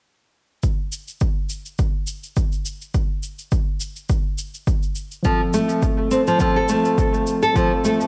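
A moderate echo-chamber reverb and heavy echo give this short fragment of organic downtempo a mystical, meditative haze, with a light swing in the groove. From 0.6 seconds, an up-front, punchy electronic kick with a layered, produced character sets the pulse, joined by a quieter electronic shaker, both sitting in small-room ambience. At 5.2 seconds, a bright, fingerpicked nylon-string guitar enters with classical-style arpeggios, carried up front and trailed by tape echo. Alongside it, an overdriven tine electric piano adds barky, gritty accompaniment through a combo amp, pumping under sidechain and also washed in tape echo. The harmony moves from an open, chordless opening to an F chord as these two parts arrive, and the fragment cuts off at 8.1 seconds.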